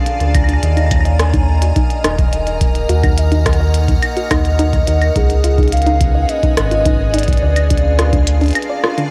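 Light reverb and a digital ambience surround this cerebral, eerie IDM excerpt, cut from a longer piece. An icy, crystalline pad holds sustained chords with a slow attack and built-in reverb. Alongside it, a lo-fi, wave-folded pluck spins arpeggios through chorus and delay, under a filter sweep that runs the whole way. A glitchy kit of claves, clicky hats and rim clicks floats in a diffuse ambient delay beside a dry, deep electronic kick, while a round analog bass stands up front as the most prominent part. From 0.6 seconds a warbling, nostalgic lead carries the melody with vibrato, analog chorus and analog delay, over harmony that moves from Bb7/D through Ebm and Db7, and a short break arrives at 8.6 seconds.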